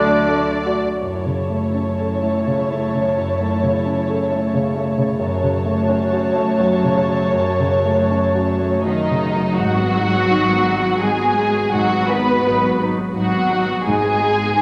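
An excerpt of a bittersweet, sorrowful film score in F# minor, moving in a rubato 3/4 around 79-88 BPM, opens with a barely audible airy flute, a warm solo clarinet and a distant, roomy French horn section that drop away within the first second, leaving a dark, up-front concert grand piano beneath muted, veiled violin sections carrying the melody and a lush close second line, while con sordino violas and distant cellos sit in the background, muted double basses return at 9.6 s, and a wet scoring-stage reverb wraps the whole orchestra as the chords drift from D through A/F#, F#m and B/G# to G#m.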